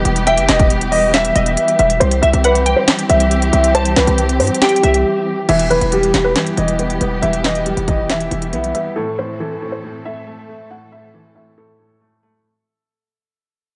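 A lightly reverberant mix with softened highs opens this eerie, hard-hitting trap excerpt in E harmonic minor at 138 BPM with a half-time feel, where a dark, mellow concert grand piano carries the melody with delay over lush, bowed symphonic strings holding sustained chords, while a glassy, crystalline wavetable pluck with chorus and delay warbles in the background until 5.4 seconds. Up front, a punchy, heavy 808-style bass and a trap kit with a hard-clipped kick, sharp snare, crisp hats, handclaps and crash drive the groove through the first half, pausing briefly in a break just before the second section. From 5.5 seconds a soft, felt-muted upright piano adds intimate accompaniment as the drums and bass drop away near 8.8 seconds and the piece fades out over Em and Am.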